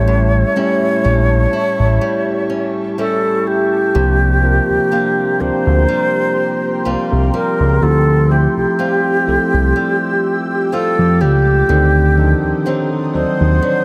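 Contemporary R&B with a late-night, longing mood, this slow, swung passage is cut from a longer piece. An airy alto flute carries the melody up front, its tone crisp at the attack with an unsteady vibrato and a trail of analog delay. A bell-like tine electric piano plays the accompaniment, bright and clean through lush chorus and delay, while a boxy fingerpicked acoustic guitar adds swing-style arpeggios, also echoed by delay. A fat, thick analog bass sits up front with a moving notch in its tone, and an ethereal pad holds sustained chords high above, treated with ensemble chorus, phaser and its own reverb. A break arrives at 2.0 seconds before a new section opens at 3.9 seconds, moving through suspended, minor eleventh and altered dominant harmonies in a small room with an echo-heavy mix.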